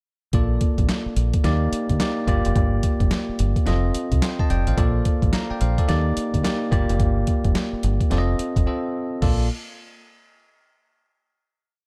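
This R&B piece in a new jack swing style has a bouncy, flirty mood, riding a hard-swung feel in 4/4 as a short verse cycles twice through Bbmaj7, Ebmaj7, Gm7 and F7. A gritty, compressed, pitched-down sampler-style drum kit sits up front with a thumpy kick, a medium-tuned snare layered with handclaps, hi-hat and crash cymbal, giving a tape-warm drum-machine beat. Underneath, a deep dub fingered electric bass plays a round, punchy, foam-muted synth-funk line with muted ghost notes. A bell-like, bright tine electric piano, clean and up front, pushes its drop-2 chords and adds grace notes and short fills. After a brief break at 8.7 seconds, the piece settles on a final Bbmaj7 from 9.2 seconds, all set in a digital ambience with a dark, warm production.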